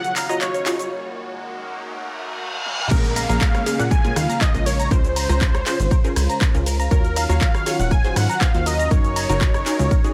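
Progressive house at 120 BPM in Bb minor, this driving, dreamy excerpt opens with a short build-up: a thick, bold unison lead carries the melody with vibrato, tape echo and sidechain pumping, joined very quietly by a soft, round pluck on a second line, while a filtered supersaw swell holds evolving, mellow chords and a lush unison pluck punches out stabs. A house drum kit with cabasa, handclaps, hi-hats, ride, rim clicks, toms and crash plays a fill at the start, a barely audible glassy texture of drifting overtones appears for the first 0.9 seconds, and a riser with a filter sweep and a reverse cymbal push toward the drop. A tight, nasal sequenced synth runs arpeggios in the background from 0.2 seconds, with chorus and tape echo. At 2.9 seconds the drop arrives as a punchy, up-front electronic kick and a funky, plucky analog bass enter, the parts breathing with sidechain pumping over a cycle of Bbm7, Dbmaj7, Ebm9 and Gb6. 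The drums carry a tape-warm, small-room character, and the whole mix sits in light reverb.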